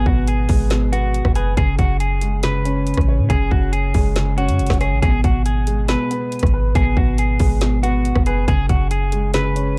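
A half-time trap groove at 139 BPM in 4/4 drives this menacing hip hop excerpt in G# minor, with an electronic trap kit entering at 0.1 s: a hard-clipped kick, a woody snare, a rim click and metallic hi-hats, all given a warm, tape-like character and placed up front. Underneath, a clean 808-style bass sits just as prominently, its deep, boomy sine tone striking with a fast attack and then decaying in the low register. A mellow concert grand piano with a deep bass end supplies the accompaniment through a low-pass filter. Further back, a clean, fingered electric guitar carries a melody in a narrow upper range, softened by its own low-pass filter and trailed by digital delay. The harmony moves between G#m and F#sus2 under a shadowy digital ambience, and the clip, cut from a longer piece, runs about 9.8 seconds.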